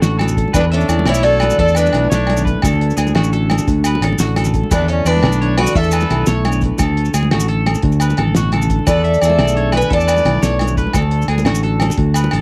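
A mellow electric guitar sits in the background with a twangy, slightly broken-up electric guitar playing arpeggios, over a punchy, up-front fingered bass and a cloth-damped, thuddy drum kit with a fat snare, as maracas, ringing agogo bells and soft, high-tuned congas join within the first second. This joyful, carefree highlife excerpt in a straight 12/8 rocks between D and E7sus4 while a boxy, picked steel-string parlour guitar carries the melody from 0.5 seconds and a bright trumpet with vibrato adds a second line, both dropping out at 10.6 seconds. The whole has the light reverb of a home cassette recording, with plate reverb on the lead parts and tape echo on the acoustic guitar.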